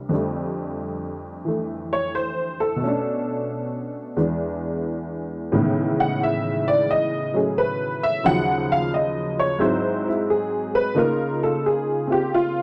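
Playful and sophisticated, this short solo jazz excerpt swings at a relaxed pace as a detuned, jangly honky-tonk upright piano sits up front with a woody, vintage character, moving through lush extended harmonies like F69, Amaj9#11 and Db69 in a dry, close 1970s-style studio sound touched by light reverb.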